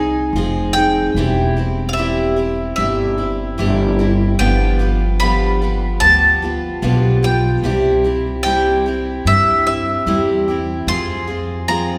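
A straight 4/4 pulse moves at an unhurried pace through this reflective, haunting acoustic folk passage, cut from a longer piece and played by a small group from 0.0 to 12.0 seconds. A bright bowl-back mandolin carries the melody up front, its picked double strings ringing high in its range. Beneath it, a picked twelve-string acoustic guitar supplies shimmering, octave-doubled accompaniment, its old strings giving a warm, woody tone. An upright bass plays pizzicato on gut strings, dark and thumpy, anchoring the low end. The harmony moves from Fm7 through C/E and G7 to C before settling on Fm, and the group sounds as if it were recorded in a church or concert hall, with a long, wet reverb that lingers around the instruments.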